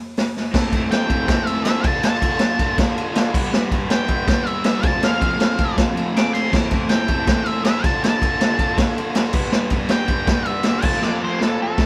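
Garage rock with a gritty, swaggering mood, this excerpt drives along at 160 BPM in a straight 4/4 in A minor, cycling through Am, Dm, G and F. A raw, saturated drum kit sits up front with a boomy kick and rolled-off top, opening with a fill at 0.3 seconds before a crunchy, double-tracked overdriven guitar riff with spring reverb enters at 0.5 seconds, and a dark octave-fuzz lead guitar carries the picked melody from 0.9 seconds. The band sounds like it is playing live in one room with light reverb, and another drum fill arrives from 11.0 seconds.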